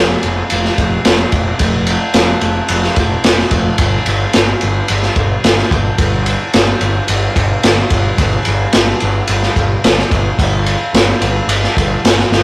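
A crunchy breakbeat drum kit sits up front in this raw, swaggering garage rock excerpt, its tight kick, medium-tuned snare and dark ride cymbal sounding saturated and gritty with a rolled-off top. The kit enters at 0.2 seconds, just after a fuzz-laden picked electric bass that opens the excerpt and holds low between F1 and G1. The bass is overdriven yet round and dark, carrying a direct, amped tone beneath the mid-forward drums. The tempo is a straight 109 BPM in 4/4, and the passage stays in one section through to 12.4 seconds. A light reverb and the rough rehearsal-room character, with its warm saturation, give the short cut from a longer piece a loose, live-in-the-room feel.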